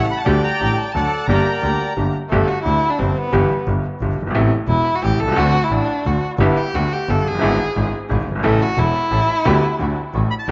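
This melancholic, dramatic tango excerpt opens in a rubato waltz-time lilt, with a reedy bandoneon carrying the melody over a bright baby grand piano, a bowed double bass and a violin playing a second line. The bandoneon sounds boxy, as if in a small room, and steps away at 1.9 seconds, returning only for a brief phrase at the very end. From 2.3 seconds the violin takes a solo, singing with vibrato and expressive portamento. Beneath it, the piano's brilliant tone rings with long sustain and audible action noise, while the single bowed bass stays clear and intense with a light vibrato. A very quiet chamber string section, muted con sordino and veiled in tone, adds soft-edged stabs at the start and again from 6.4 seconds. The whole recording sits in a wet spring reverb, and its top end is rolled off above 7.6 kHz.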